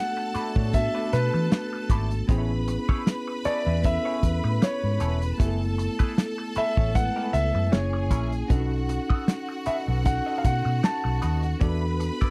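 A clear, intimate grand piano carries the melody from the start, with audible action noise, over bell-like tine electric piano chords and a bright, lush string section singing a second line in this smooth, bittersweet 1970s-style soul excerpt in F# minor at 77 BPM, as a clean, compressed semi-hollow guitar with wah plays a riff from 0.2 s, a punchy, dark soul drum kit with hi-hat, kick and snare joins at 0.3 s, and a round, foam-muted fingered bass enters at 0.4 s, all heard dry and close through chords moving from E7sus4 to Amaj7, F#m11, F#7 and B7.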